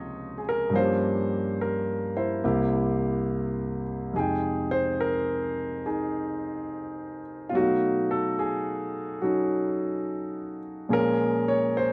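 A natural-sounding concert grand piano with deep bass sits up front and carries this intimate, melancholic jazz ballad alone, swinging gently at 71 BPM in F minor through chords such as Gm7b5, Fm9 and B7#11 under light reverb, in a brief cut from a longer piece.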